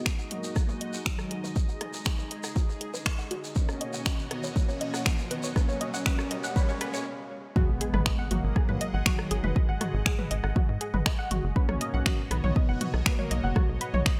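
Melodic techno at 120 BPM in G# minor, driving and melancholic, where a punchy overdriven kick and bright-hatted house kit of finger snaps, rim clicks and toms push a tight sawtooth sequencer bass, a detuned plucked arpeggio synth with digital delay, a fat, warbling analog brass melody and an evolving resonant pad, all pumping against the kick, while a grainy shekere plays until 7.0 s, a background riser builds through a filter-swept passage before a short stop, the drop lands at 7.6 s with an impact, and a very quiet, tense string-like drone enters at 9.8 s beneath the bright 1980s-style digital sheen.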